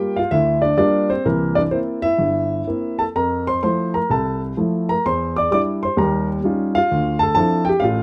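Solo jazz with a late-night, smoky mood, this 8-second fragment of a longer piece features an intimate grand piano spanning G1 to D6, played up front with a swung, rubato feel, its natural tone carrying audible action noise under close, detailed microphones and a light reverb as the harmony moves from Gm7 and C7 through Fmaj7 toward Eb9 and Dm9.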